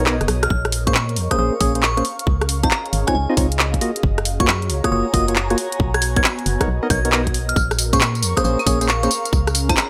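A hollow, percussive organ stab, dark and full-bodied with a chorus and delay shimmer, drives this skippy, bouncy two-step UK garage excerpt, set over an up-front, organ-like FM bass and a swung garage kit of claves, handclaps, hi-hat, rim click and tambourine that carries a tape-warm, small-room feel. After a brief drum fill, a tight electronic kick enters at 0.5 seconds, while a glassy, crystalline FM bell traces a bright melody up high and a soft, breathy pad with phaser and sidechain pumping drifts underneath. Lush extended chords such as Bmaj9, Bbm9, Dbmaj9 and Gbmaj7 cycle beneath it all, sitting in light digital reverb.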